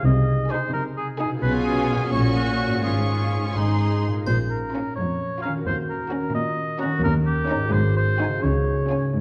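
Heard through a worn, warbling old cassette tape with drifting pitch and the wet bloom of a scoring stage, this short cut from a longer film cue has a mischievous, whimsical air. It moves at 86 BPM in a lilting 6/8 with a straight feel, in Db major, passing through chords such as Gb/Bb, Bbm and Ebm7 before Eb7 and Ab7 lead home to Db. A chamber violin section carries the high melody with a focused, vibrato-laden tone. A lush symphonic violin section sits in the background on a second line, and a distant, even viola section fills in the accompaniment. A concert harp rings out fingerpicked arpeggios, and a warm, roomy oboe adds its own second line with light vibrato, while a clear cello section and a rich, close double bass section anchor the bass. A triangle with a dark, small-room ring adds a brief touch of colour from 4.3 s to 5.2 s.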